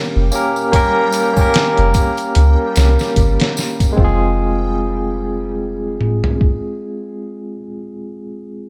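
Smoky and cinematic, this short trip hop excerpt moves at 74 BPM in F minor with a swung sixteenth-note feel. A barky, lightly overdriven tine electric piano sits up front through a combo amp, colored by tremolo and tape echo, while a very quiet, moody analog pad with chorus and phaser holds sustained chords beneath it and a reversed, granular swelling texture drifts dreamily in the background until 4.0 seconds. A deep, round 808-style bass with tube saturation enters at 0.2 seconds, and tambourine, triangle, egg shaker and group handclaps sit far back in a small room. The sampler-style drum kit arrives at 0.7 seconds, compressed and pitched down with 12-bit grit, a thumpy kick, medium-tuned snare, hi-hat and toms. The harmony shifts from G diminished to F minor at 4.0 seconds, and the whole mix is bathed in light digital ambience.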